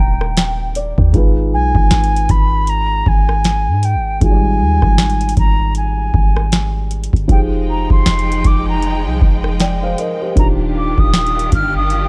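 Smooth and tender, this contemporary R&B passage, cut from a longer piece, moves with a gently swung sixteenth-note feel. An airy, distant concert flute carries the melody with vibrato and a touch of delay, while a felt-muted upright piano gives dark, intimate accompaniment and opens with a short fill. A deep, boomy 808-style bass sits up front alongside a booming analog drum machine that enters at 0.2 seconds with a crisp snare, metallic hi-hats, rim clicks and a deep kick. At 7.3 seconds a lush, bowed string section joins with sustained chords, its expressive portamento gliding under sidechain pumping. The harmony drifts through rich extended chords, and a small room ambience wraps the whole sound.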